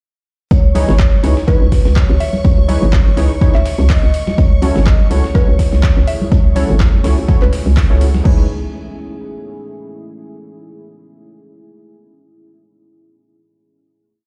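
An overdriven four-on-the-floor electronic kick drives this late-night deep house piece at 124 BPM with a 16th-note swing, backed by a metallic-hatted deep house kit with claps and crash, a gritty looped soul breakbeat in the background, soft syncopated congas and bongos, and a hollow, bouncy FM bass in a dotted rhythm that pumps against the kick. In C# minor over C#m9 and F#m7, round detuned analog keys play syncopated chord stabs with tape echo, a ringing vibraphone wanders through a free melody while a woody synth pluck adds short phrases, and a shimmering string machine holds a high C# in the background. A dark, full-bodied pad enters at 5.0 s, and after the drop ends at 8.3 s the piece settles onto a final C#m9 chord inside a big, bare-room reverb.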